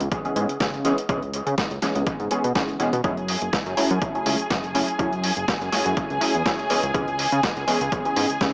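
A funky polysynth comp sits up front in this short cut of filtered disco house, its dark, detuned sawtooth plucks coloured by chorus, phaser and dub echo over a fat analog bass and a gritty, overdriven sampler-style kit of hi-hat and snare, with a punchy electronic kick joining at 0.1 seconds, while the sidechained parts pump in F# minor at 123 BPM with a light 16th-note swing. At 3.0 seconds a muted string section enters with veiled, con sordino chords carrying 12-bit sampler grit as the harmony moves from C#m7 to F#m9 and back at 6.7 seconds. A filter sweep runs throughout, and the echo-heavy, small-speaker mix gives the music a nostalgic, sensual haze.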